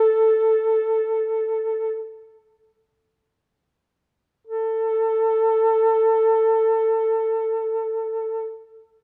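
Mournful and longing, this short fragment of Caucasian folk music features a dark, punchy solo duduk, up front yet roomy, carrying the melody with vibrato and scooped notes, slowing over the first 4.5 seconds before a second phrase begins, all bathed in the lingering reverb of a recital hall.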